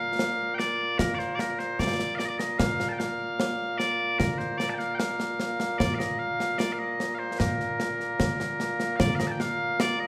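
Loud bagpipes open the recording at 0.0 s with a piercing, continuous tone, carrying the melody up front across a range from Bb2 to A5. At 0.2 s a concert snare drum and concert bass drum enter, also up front, sounding close and dry with bright cymbals. This proud, ceremonial piece of Scottish traditional pipe music moves in a straight duple metre. The opening strain returns at 9.0 s before the clip ends, as it is cut from a longer piece. The pipes ring out in a moderate recital hall reverb, giving the sound the resonance of a church or concert hall.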